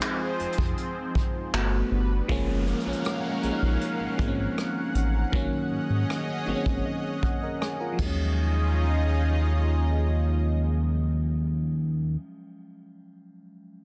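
A dense, heavily limited modern master with light reverb and small room ambience frames this moody, sensual contemporary R&B excerpt, cut from a longer piece, at 79 BPM in 4/4 with a straight feel in Eb dorian. A glassy FM electric piano with a bell-like attack and a warbling chorus opens with a brief solo, then returns with a fill at 6.1 seconds over chords moving from Fm7 and Gmaj7 through Gbmaj7 and Ab7sus4 to Ebm11. Beneath it, a lush unison pad holds thick, detuned sustained chords, treated with chorus and phaser and carrying a bright, slow-attack sheen. Up front, a smooth synth bass built from sawtooth and square waves with ring modulation gives a dark, sustained low end. A vintage brush drum kit with dark cymbals, a punchy kick, hi-hat, ride, rim click and handclaps sits close and natural with a rolled-off top until it stops at 8.2 seconds. An electronic downlifter drifts in the background from 2.3 seconds.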